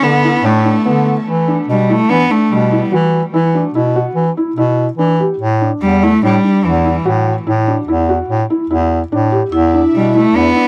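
A dry, gritty hardware recording with light reverb frames this brief cut from a longer piece of contemporary chamber music in 5/4, straight and both urgent and pensive in mood. A single bowed cello carries the melody up front, earthy and nasal with light vibrato, an airy bow and a touch of tape echo. Beneath it a clear, classical-style bass clarinet holds the bass line throughout, present and distinct, while a felt-muted upright piano plays soft, intimate arpeggios with short sustain, dressed in plate reverb and tape echo. A vintage, band-limited vibraphone with medium hard mallets adds a ringing metallic second line, and a smooth studio string section sustains even chords in the background, both with plate reverb; each sounds only at the opening, drops out by 1.2 seconds and returns at 9.5 seconds. The harmony moves from Dsus2 to E7(no3) and Asus4 before settling back on E7(no3).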